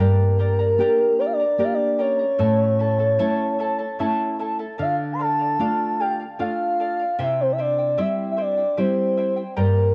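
From the first moment, a breathy, gliding synthesized lead carries the melody over two fingerpicked acoustic parts in this festive yet wistful Andean folk piece, cut from a longer performance. The lead blends a pure sine and triangle tone with a noise layer and a sub octave, opening with a fast attack into sustained notes that bend through portamento and waver with vibrato, thickened by chorus and sitting up front in the mix. Beneath it, a nylon-string guitar plays a deep classical accompaniment, dark in color, also placed up front, with finger squeaks audible on the strings. A charango sits further back, its double courses and some octave-doubled strings giving a bright, shimmering sparkle, and both stringed parts carry the softened grain of cassette tape. The three play together in triple time through the full 9.9 seconds, moving through Gm, A, Dm and C, in a small room with light reverb that gives the home recording an intimate feel.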